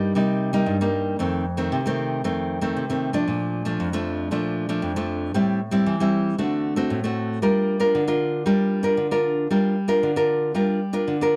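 Samba at 116 BPM in G minor, this playful, lively solo passage for fingerpicked nylon-string guitar sits up front with a classical, acoustic tone, moving from Cm7 through F7, Bbmaj7, Am7 and D7 to Gm7 over 11.4 seconds, captured by close, detailed microphones with light reverb, slightly sharp of standard pitch at A4 = 441 Hz and cut from a longer piece.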